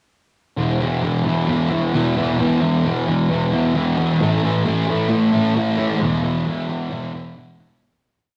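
A cassette home recording with moderate studio reverb frames this short, blissful and wistful rock piece at 133 BPM in 4/4. A lone dark, double-tracked fuzz guitar sits up front, strumming E5 and A5 power chords with whammy-bar dips, thickened by lush chorus, tape echo and worn tape grit. It plays from 0.6 seconds and fades out from 6.0 to 7.8 seconds.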